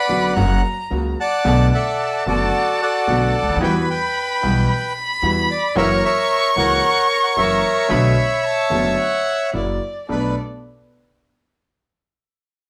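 A rubato 4/4 pulse around 111 BPM carries this melancholic, dramatic tango excerpt in B minor, moving through Bm7, Emadd9 and F#7. A reedy bandoneon sits up front with the melody, touched by plate reverb, while a single bowed violin traces an expressive second line with vibrato and portamento. A vintage concert grand piano with deep bass supplies the accompaniment, a very quiet sul tasto chamber string section adds soft stabs, and a woody, thumpy pizzicato upright bass on gut strings anchors the low end, all heard from further back in a reverberant studio room.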